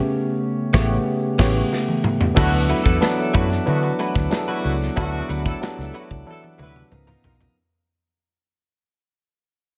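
A grand piano briefly sounds a melody note in the background, with digital delay, over clean tine electric piano chords through a combo amp with subtle chorus, and at 0.7 s a tight, up-front drum kit, a round, punchy foam-muted bass and a compressed, picked electric guitar riff with ensemble chorus join on a band accent over A9. This is polished, upbeat 1980s jazz-funk pop at 92 BPM in D major with an urban feel, and an electric piano fill and a drum fill lead into a new section at 2.4 s, where the chord moves to D69. There, a mellow, distant horn section adds a second line and a pipe organ in principal chorus voicing holds chiffy sustained chords in the background as the music fades out under light small-room reverb, touching C#13 at 6.9 s with a final drum fill.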